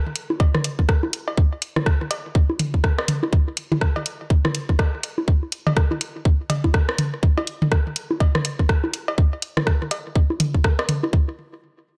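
A tight, layered electronic kick drum sits up front and carries this sparse, cool techno excerpt at 123 BPM in 4/4, with the sixteenths swung at 60%. Around it, a garage drum kit adds bright hi-hats and rim clicks, entering at 0.2 s in a crisp, produced layer. A booming analog drum machine fills in the percussion with bongos, cowbell, rim click and toms, its tape-warm tone treated with delay. All three parts sit close and forward in the mix, running together through the roughly eleven seconds of this single section. A light reverb lends the whole a digital ambience, and the passage is clearly cut from a longer piece.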